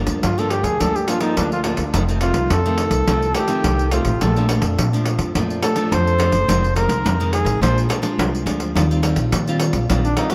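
A dreamy, reverb-soaked mix with a moderate plate reverb and a faint mains hum frames this short, nostalgic and bittersweet samba-choro excerpt at 106 BPM in 4/4. A warm flugelhorn takes the solo melody with vibrato, scooped notes and a smooth top, trailed by a diffuse ambient delay, while a small-sounding fingerpicked nylon-string guitar with subtle chorus moves through chords from Gm7 and F7 to Bbmaj7, Fm7, Bb7 and a closing Eb69. Beneath them, a woody, thumpy pizzicato upright bass sits up front, and a jingly, band-limited pandeiro played with hard hands adds a vintage shimmer.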